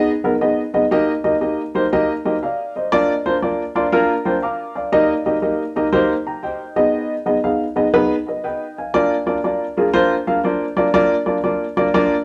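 Close and intimate in a wet studio room, this joyful, uplifting soul fragment features a lone dark grand piano, mellow and worn with audible action noise and a touch of analog delay, swinging through minor and major chords with a fill at 3.4 seconds before shifting to a new section at 8.9 seconds.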